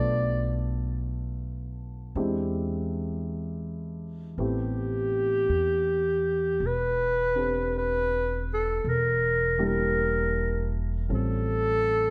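A breathy clarinet leads this slow jazz ballad at 54 BPM, carrying the melody up front in a clear, jazz-style solo with light vibrato and scooped notes. Beneath it, a dark, mellow grand piano supplies the accompaniment, while an upright bass plays pizzicato with a woody, acoustic tone from its steel strings, also placed close to the listener. The three parts sound together from the start through to 12.1 seconds, in 4/4 with a gentle eighth-note swing and an intimate, wistful mood in A minor. The harmony moves through Bm7b5 and E7alt to a long Am9, then turns to Em7b5 and A7alt. A moderate echo chamber reverb gives the room a soft halo, and the passage is cut from a longer piece.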